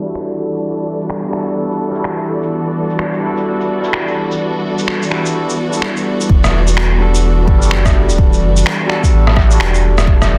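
Future garage at 127 BPM in E minor with a swung, wistful, rainy feel, this short excerpt opens on a bright, barky tine electric piano through phaser and tape echo over a lush, woody bowed string section with 12-bit sampler grit and a filter sweep, joined by a muffled, tape-warm bed of electronic shaker, finger snaps and rim click with soft-clipped snare, until a deep kick drum and round, up-front sine sub bass enter at 6.3 seconds, pumping the piano, strings and bass, all in a dry, dense, heavily limited mix resting on an Em11 chord.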